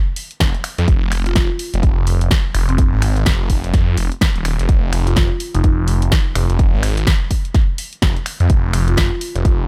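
Aggressive and gritty, this bass house cut moves at 126 BPM in 4/4 with a 16th-note swing of 60% in F minor. A house drum kit of finger snaps, hi-hat and a punchy snare enters at 0.2 seconds, followed by a punchy, layered electronic kick up front from 0.4 seconds, both carrying a small room ambience. The phased detuned saw bass sits up front, a thick, swirling unison sawtooth with a sine layer, fast attack and sustained notes, driven by tube saturation and sidechain pumping as it ranges from Eb1 to F2. In the background, a woody marimba played with medium mallets adds a melody between C4 and F4 through a digital delay, appearing from 1.3 to 5.7 seconds and briefly again near 8.9 seconds. The sound is dry and close, with little reverb, and the passage is cut from a longer piece, opening on an F5 chord.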